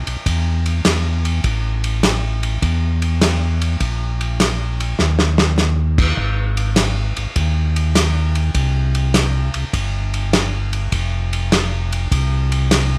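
A mellow, round tonewheel organ holds down the bass with chorus vibrato and a slow rotary speaker, joined at 0.1 seconds by an acoustic soul drum kit in a small room with a fat snare, a tight kick, dark cymbals and a rolled-off top. Both sit up front with light reverb as this bluesy, greasy soul jazz organ trio fragment swings in 4/4 at 101 BPM, tuned to A4 = 439 Hz, with a drum fill at 5.0 seconds.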